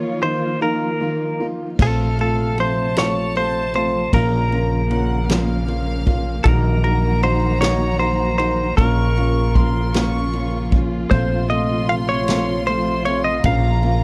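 This six-eight pop ballad unfolds slowly and carries a melancholic, dramatic mood, and the passage is cut from a longer piece. A bright, twangy clean electric guitar, recorded direct and sitting up front, carries the melody over a felt-muted upright piano whose thick felt gives a mellow, intimate tone with audible action noise. Lush bowed symphonic strings hold sustained chords in the background, while a very quiet, full-bodied steel-string acoustic guitar picks arpeggios alongside them. At 1.8 seconds the opening break gives way as a reedy, period-style violin section adds a second line up high, a woody pizzicato upright bass enters up front, and a distant, roomy drum kit played with bundle sticks joins with dark cymbals, a tight kick and a medium-tuned snare. The harmony moves from Ebsus2 through F/Bb and Bbm to Ebm/Bb, and the overall sound stays dry, with little reverb.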